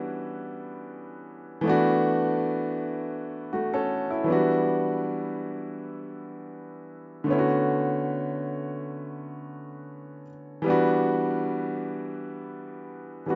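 A solo baby grand piano, clear and naturally voiced with long sustain and placed up front, opens this brief, longing R&B fragment, moving through moody Em7, D69 and Bm7/D chords in a light reverb and studio ambience, in a rough home demo mix whose top end is dulled.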